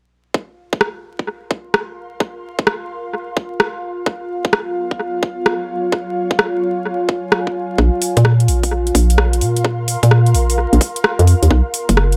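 Awash in echo and vinyl crackle, this moody, skippy two-step garage excerpt sets a smooth, detuned sawtooth pad, shaped by a filter sweep and sidechain pumping, beside an ethereal, airy pad that enters at 1.5 seconds, while a tight electronic kick and an up-front garage kit of metallic hi-hats and rim clicks carry the swung groove, until a hollow, bouncy FM bass punches in at 7.8 seconds.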